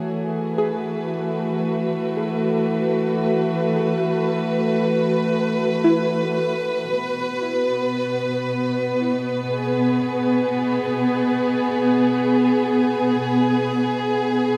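Floating in free time, this ambient fragment of a longer piece feels weightless and serene, built on a dark studio string section that holds bowed sustained chords up front throughout, its soft sul tasto tone intimate and smooth with light vibrato as B7sus4 gives way to G#m at 6.9 seconds. Tucked in the background from 0.6 to 7.4 seconds, a soft round pluck traces quiet arpeggios, its detuned, wave-folded shimmer thickened by chorus and dub echo. A wet plate reverb and an echo-heavy mix let the sound hang in the air.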